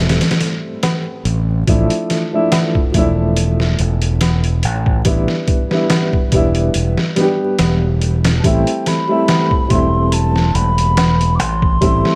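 Light reverb, a small-room ambience and vinyl crackle frame this cinematic, smoky trip hop fragment in A minor, moving at 71 BPM with a gently swung 16th-note feel through Am7, Dmadd9 and Em7. Up front, a dark, woody upright piano treated with tremolo, low-pass filtering and tape echo sits over a growling, overdriven fingered electric bass and a gritty, pitched-down sampler-style drum kit with a thumpy kick, while a low-tuned, ringing tabla hovers in the background. At 8.4 s an airy baroque flute with vibrato enters, its tongued line trailing tape echo.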